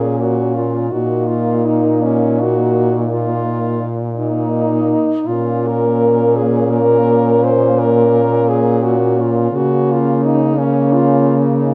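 A clear French horn carries the melody up front, singing between Db4 and C5 with a light vibrato in this melancholic, yearning classical piece for horn quartet. Beneath it, a mellow horn sits distant and roomy in the background, tracing a narrow second line from Db4 to Eb4 with its own vibrato. A dark horn with a smooth top holds the accompaniment on Bb3, while a soft-attacked bass horn, also up front, moves between Bb2 and Db3 with vibrato and a warm, smooth-topped tone. Set in Bb minor and 12/8 at a slow 57 beats per minute in dotted quarters, the playing breathes with rubato, resting on Bb minor before shifting to Bb minor over Db at 9.5 seconds. The four horns share a moderate scoring-stage reverb that gives this fragment, cut from a longer piece, a spacious, lyrical glow.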